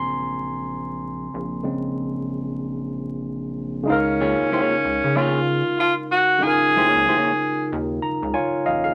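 A clear, up-front tenor saxophone carries the melody from 3.9 to 7.7 seconds over a barky, lightly overdriven tine electric piano that solos through the opening and returns with a fill, while a rubbery square bass and a dark semi-hollow electric guitar fill out this smooth, swung R&B excerpt at 94 BPM in Db major, set in a moderate club reverb with vinyl crackle.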